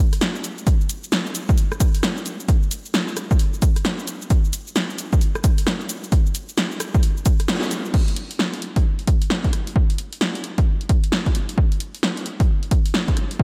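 A punchy analog drum machine opens this soulful, sunny UK garage cut from a longer track. Its up-front snare is joined by crash cymbal, hi-hat, rim click and shaker in a swung 16th-note groove, and a forward electronic kick enters at 0.7 s. At 7.5 s a band accent lands as the kick briefly drops out, returning at 7.9 s as the second section begins, while a lush hall reverb soaks the mix in a dreamy haze.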